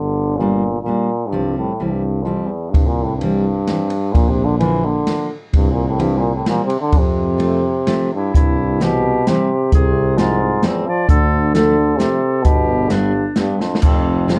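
A clear, roomy euphonium carries the melody up front over a mellow, soft-edged tuba bass and a full-bodied fingerpicked jumbo acoustic guitar, opening this festive, bouncy alpine dance-band number at 130 BPM in 3/4 and F major. An open jazz kit with dark cymbals and a boomy kick joins at 2.7 seconds, and a warm clarinet adds a classical-style second line from 8.1 seconds as the tune moves to C major. The drums play a fill at 13.6 seconds, and the whole is set in a dark production with light reverb, cut from a longer piece.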